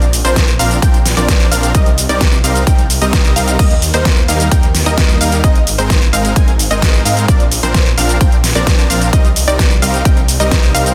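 Festival progressive house with a triumphant, uplifting mood, built on a huge, euphoric supersaw lead riff over a thick, menacing detuned saw bass and a lush pluck arpeggio tinged with vintage 12-bit grit and tape echo, all three pumping to the sidechain, while a punchy, up-front electronic kick enters at 0.4 seconds alongside an overdriven pop kit with a deep snare, crash, hi-hat and shaker, moving through Bbadd9, Cm7, Eb and Abadd9 in a dense, heavily limited modern master.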